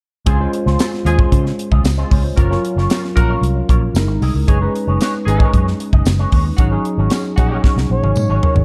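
A tight, straight 4/4 funk groove at 114 BPM drives this breezy, glossy slice of polished 1980s jazz-funk pop in Db major, cut from a longer piece. Up front, a dry, airy drum kit with a high-tuned snare and tight kick pairs with a round, foam-muted fingered bass that sounds dark and amped, while a jingly tambourine sits distant in a large room in the background. A worn, slightly out-of-tune tine electric piano, lightly overdriven through a combo amp and dressed in lush chorus, carries the harmony from Dbmaj7 through Gbmaj7 and Gb13 to an Ab7sus4. Beside it, a bright, twangy electric guitar plays a clean, picked, compressed riff through an envelope filter with ensemble chorus, and a loose, vintage horn section adds a jazz-style second line until 7.6 s. A drum fill arrives at 7.6 s, and at 7.9 s a smooth, sawtooth-and-triangle synth lead enters on a sustained Db5 with soft attack, vibrato and chorus, all within a dark studio reverb.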